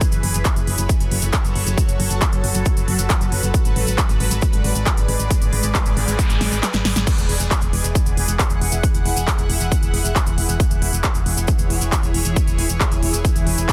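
Uplifting trance with a bittersweet, emotional mood, cut from a longer piece, where a shimmering, ethereal pad holds sustained chords with chorus, phaser and sidechain pumping above a round, dark FM bass and a punchy, overdriven kick up front, while an electronic dance kit of crisp hats, handclaps, snare and crash plays alongside a grainy acoustic cabasa, and a background noise sweep and drum fill accompany a brief kick dropout from 6.6 to 7.1 seconds in a dense, heavily limited modern master.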